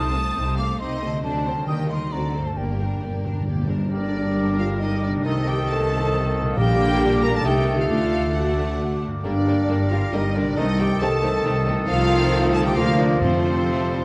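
This fast, dramatic Romantic orchestral passage in G minor, cut from a longer work, opens at 135 BPM in 3/4 with the full string body, flute, horns and harp sounding together. A lush violin section carries the melody with vibrato, portamento and a soft attack. Above and behind it sit a pure, straight-toned flute with a crisp attack and a second, more focused violin line. Beneath them, smooth violas, an expressive cello section, a clear double bass section, dark sustained French horn chords and ringing fingerpicked harp arpeggios fill out an urgent texture. Very quiet, close and dry timpani struck with hard mallets enter at 1.2 seconds and return in brief bursts, with a fill leading into the moment at 3.9 seconds when an oboe with light vibrato and a very quiet clarinet join as distant, roomy solo voices, alongside a soft-attacked solo bassoon in the background. The harmony moves through diminished and dominant chords that pull toward G minor before turning to B-flat and then, at 13.2 seconds, to F, all set in a recital-hall reverb with a warm production.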